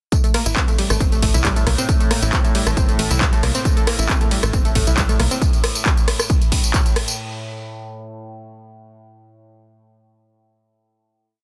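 A heavy, tape-toned four-on-the-floor kick, an overdriven analog drum machine with claps, hats, ride, rim and tambourine, and a bright 16-step analog pluck riff with chorus and dub echo all open this intense, hypnotic 136 BPM peak-time techno drop in A phrygian over an A5 chord, joined at 0.5 s by a tight, saturated sawtooth sequencer bass rolling in staccato and at 0.8 s by a resonant, overtone-sweeping drone on A2 with chorus and reverb, all pumping against the kick in a dense, heavily limited master until the kick drops out at 6.8 s and the drone and drum machine end at 7.2 s.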